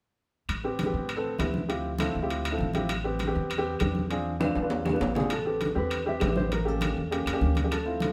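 An intimate upright piano, up front with audible action noise, accompanies this sultry, sophisticated Afro-Cuban jazz excerpt at 199 BPM in A minor alongside thumpy gut-string pizzicato upright bass, bright soft-handed congas, ringing saturated metal-shell timbales and distant woody claves in a wet stone room, with a drum fill at 4.4 s before a dark, full-bodied thumb-plucked nylon-string guitar melody enters at 5.3 s over chords such as Am9, Dm11 and E7b9b13.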